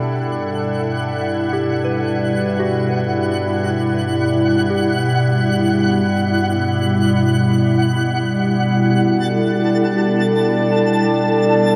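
A mellow, organ-like pad sits up front from the start, holding sustained G major chords in a slow 3/4 at 57 BPM, fading in alongside a twinkling granular shimmer high above and a floating bowed cello section on a low G in the background, while a reedy, breathing harmonium drone and a gentle FM bell playing soft arpeggios through chorus, phaser and diffuse delay both fade out. The ambient mood is luminous and weightless, all of it bathed in a huge, wet reverb with a 7.4-second tail. At 8.9 seconds the cello stops and a filter sweep moves across the pad before this excerpt ends at 11.8 seconds.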